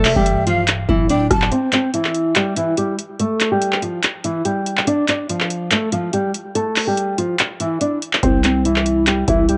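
This short excerpt has a hazy, lo-fi character, like a home cassette recording, with light reverb and a small room ambience around a wistful, dreamy half-time trap beat. A fingerpicked nylon-string guitar carries the melody up front throughout, its classical tone softened by a low-pass filter, tape wear and analog delay, with finger squeak audible on the strings. A booming analog drum machine runs the whole way, pairing a deep kick with metallic hi-hats, handclaps and rim clicks. A growling, buzzy 808-style bass with a fast attack and decaying tail sounds only at the opening and returns at 8.2 seconds, after a break in the low end. Over the first moments, a breathy jazz flute adds a soft, expressive second line with vibrato and lifted highs, drifting through the same tape and delay haze before falling away at 1.5 seconds as the harmony moves between D minor and a rootless C.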